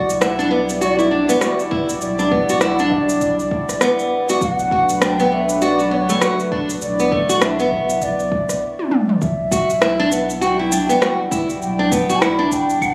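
Swung sixteenths at 100 BPM in 4/4 drive this hypnotic organic downtempo excerpt, with an overdriven, up-front deep house kit of claves, rim click, shaker and toms joined at 1.7 s by a deep, tape-warm electronic kick. A round sine sub bass and a dark, detuned sawtooth pad with chorus both pump under the sidechain, while a fingerpicked nylon-string guitar plays arpeggios with audible finger squeak and digital delay. An airy bamboo bansuri carries the melody with vibrato and delay over chords moving from Em9 to Bm7, and a drum fill at 8.8 s leads back to Em9, all heard through a lush hall reverb and club reverb, captured on a phone in the room.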